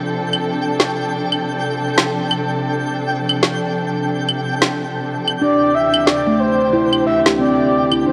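Earthy and hypnotic, this organic downtempo piece at 91 BPM in D minor opens on a dark, bowed studio string section holding Dm7 beneath a twinkling granular shimmer, joined a moment later by up-front electronic claves with a woody snare, until at 5.4 seconds a breathy, flute-like synth lead with lush chorus and tape echo and a round, ringing steel tongue drum played with soft mallets arrive over Cadd9/D, the whole mix sitting in a hall reverb and a worn, warbling cassette haze.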